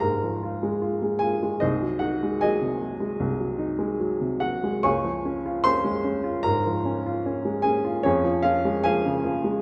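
An upright piano opens alone and plays throughout, its woody, vintage tone close and up front, with notes that fade quickly. This is a romantic classical character piece for solo piano in Db major, moving at about 75 BPM in 4/4 with a freely flowing rubato feel. The mood is hopeful and warm. The harmony rests on Db, shifts to Ab7 over C at 1.6 seconds, and returns to Db at 4.9 seconds before settling on Db over F. The playing spans from C2 to Db6. A moderate concert hall reverb surrounds the instrument, and the tuning sits slightly low at A4 = 435 Hz in this short passage cut from a longer work.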